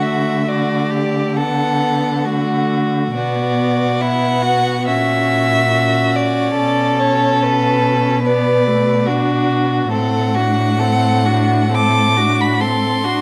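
Lyrical and tender, this slow romantic movement for string quartet breathes freely with rubato, a fragment cut from a longer piece. The first violin carries a smooth, even melody laced with vibrato, while the second violin adds a woody line with a lighter touch of it. The viola's expressive accompaniment slides with portamento, and the cello grounds the bass with its own gliding, expressive voice, each part bowed by a single player throughout the 13.2 seconds. Close, detailed microphones capture the warm quartet inside a moderate recital hall reverb.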